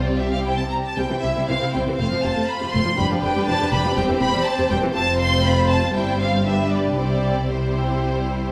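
A focused, vibrato-laden violin section carries the melody up front in this lively, spirited fragment of a quick classical-period movement for string orchestra at 120 BPM in C major, played with rubato, as a rich second violin line sits beneath it, lush, smooth violas supply the accompaniment, and expressive cellos with portamento join warm, distant double basses on the bass, the whole ensemble set in a wet stone-room reverb.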